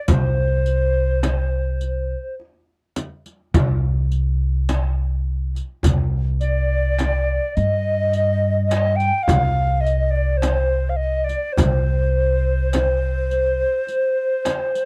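A pure, hollow alto recorder with vibrato and a tongued chiff carries the melody up front over a breathy reed-cane ney holding a soft second line in the background, while a woody, thumpy pizzicato upright bass anchors this hypnotic, soulful Arabic maqam ensemble excerpt in C minor at 104 BPM in a straight 10/8, with a deep clay-shell darbuka sounding distant, a gentle frame drum behind, and a dark, saturated riq, all captured in a dry, close 1970s-style studio recording.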